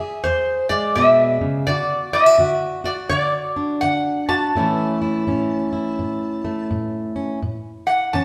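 A metal-body resonator slide guitar and a fingerpicked, plugged-in jumbo steel-string acoustic guitar start together, setting a gritty, soulful acoustic country blues mood in a swung 4/4. The resonator carries the melody with a slide and fingerpicks, its tone bright, metallic and nasal, sitting high and up front. Beneath it, the steel-string accompaniment has old strings and a woody, full-bodied sound that fills the low and middle range. The chords move from E to D and settle on A at 4.5 seconds, landing on an A5 at 7.4 seconds. The duo sounds as if it is playing live in a stone room with a noticeable wet reverb, and this short fragment is cut from a longer piece.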